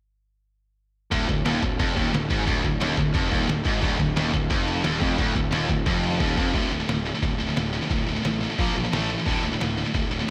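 A relentless, heavy metal passage cut from a longer piece, in D minor at 177 BPM, opens at 1.1 s with a pitched-down, muffled sampler-style drum kit with a thumpy kick, a growly fuzz bass, and three picked guitar riffs: a bright high-gain guitar up front, a second high-gain guitar with slapback echo in the background, and a double-tracked overdriven guitar also set back in the mix. The kick and snare drop out just before the overdriven guitar stops at 6.5 s, where the riff moves to D5, Bb5 and A5 chords. A lush hall reverb gives it a big arena sound, with a faint mains hum underneath.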